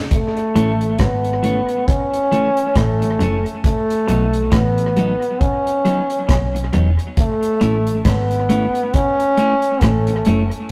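A clear, up-front trombone carries the melody in a pop style with light vibrato, its lines trailing dub echo through this short cut from a longer roots reggae piece. Beneath it, a deep, dry reggae drum kit with a tight kick, hi-hat and rim click sits forward, also touched by dub echo, at a laid-back 68 BPM in 4/4 with a gentle sixteenth-note swing. From 0.6 s, a clean, compressed, picked electric guitar with dub echo plays accompaniment. A twangy guitar at the edge of break-up picks a low riff in the background, while a vintage fingered bass adds a dark, round, foam-muted bottom. The harmony moves from A to B at 3.6 s and returns to A at 7.2 s, keeping the mood uplifting. It is a rough rehearsal-room recording with tube saturation and a moderate stone room reverb.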